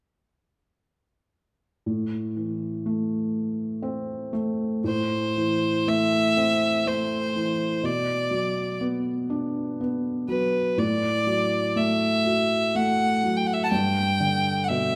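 A recital hall's moderate reverb, about 1.7 seconds long, gives this haunting, mournful Celtic slow air a sense of space. The fragment comes from a longer piece in A dorian, moving freely in a rubato 3/4 at around 61 BPM. A felt-muted upright piano opens alone at 1.9 seconds, its soft, mellow, intimate tone sitting up front as it carries the accompaniment through chords of Am, Bm, D/A and G. At 4.9 seconds a single bowed fiddle enters with the melody, its clear, smooth voice carrying a light vibrato and held close in the mix. The fiddle's even line stays in a high register above the piano's muted low-to-middle harmony, and both continue together through to the end of the fragment.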